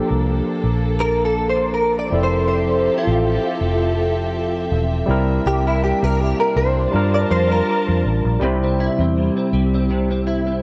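An 81 BPM pulse in 4/4 with a light swing on the sixteenths sets a wistful, lonely mood for this indie and bedroom pop excerpt, cut from a longer piece. A bright, direct-recorded clean electric guitar, picked and compressed and sitting up front with chorus, vibrato and analog delay, carries a solo from the start until 8.4 seconds. A barky tine electric piano, lightly overdriven through a combo amp and touched with analog delay, fills in the accompaniment, while a dark, round, foam-muted fingered electric bass anchors the low end from 0.1 seconds. A lush studio string section, bowed sul tasto with a soft attack and smooth top, holds sustained chords through Bbmaj7, Fmaj7, C7 and Gm7 before dropping out at 8.4 seconds, when the harmony settles on C. Moderate spring reverb and digital ambience give an echo-heavy mix with the character of cassette tape.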